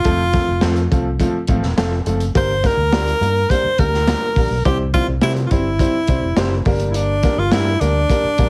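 A straight 4/4 groove at 104 BPM drives this passionate, uptempo 1960s-style soul excerpt in G dorian, built on a gritty, saturated breakbeat drum kit with a dark, rolled-off top, a tight kick, medium-tuned snare and hi-hat, under a round, punchy, foam-muted fingered electric bass. Up front, a breathy tenor saxophone carries the solo melody with light vibrato, while a woody, boxy upright piano with short sustain accompanies over chords moving from F to Gm, C and back to Gm. Light reverb and a heavily compressed, radio-like sound shape this short cut from a longer piece.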